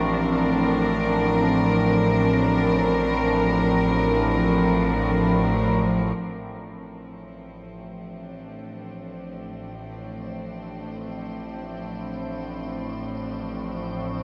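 An earthy, bowed chamber cello section with light vibrato holds sustained chords up front over a nasal, resonant drone of moving overtones, the harmony shifting from Bb to F at 6.2 seconds in this dark, cavernous ambient drone piece in free time, where an icy, crystalline pad enters faintly at 7.3 seconds, cello, drone and pad fade in from 6.2 seconds, and a cathedral reverb with a 5.2-second decay fills the space of this section cut from a longer piece.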